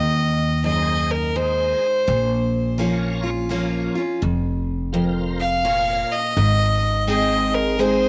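A clear, earthy fiddle sits up front and carries a lonesome solo with light vibrato across this short cut from a longer honky-tonk and classic country piece, set in Bb minor at 84 BPM in a swung 3/4. Underneath, a full-bodied picked dreadnought guitar and a woody, thumpy pizzicato upright bass hold the accompaniment over Ab and Bb minor chords, while a shouting tonewheel organ with key click, chorus vibrato and a slow rotary speaker slips in quietly at 0.6 seconds. Light reverb and small-room ambience give the dusty waltz an intimate feel.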